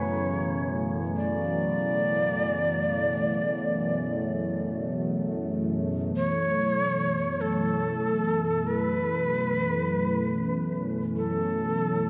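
Drenched in a wet spring reverb and heavy echo, this ominous, desolate dark ambient drone fragment sets a breathy, bamboo-toned shakuhachi melody with vibrato and a crisp, chiffy attack up front beside a bright, full-bodied resonant pad of evolving detuned chords, while a chorused drone of moving overtones hums in the background and a faint metallic singing bowl rings only until 6.2 seconds.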